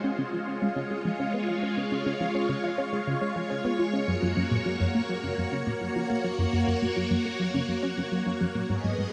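Ambient, sequencer-driven space music at 104 BPM in a straight 4/4, this short passage cut from a longer piece feels expansive and hypnotic. A phased string machine holds sustained chords throughout, its swirling, vintage sawtooth tone bright and up front, with a slow attack and long release thickened by ensemble chorus, phaser and shimmer reverb. Beneath it, a tight sequenced synth drives a riff from 0.0 to 9.1 seconds, blending detuned sawtooth, square and sine waves with a wave-folded edge and a plucky filter on a fast attack, treated with chorus, phaser and tape echo. A filter sweep moves across the synth's arpeggio sound for the whole passage. The harmony rests on C# before shifting to F# at 4.1 seconds, and the recording sits in a huge, wet ambient reverb with an eight-second decay.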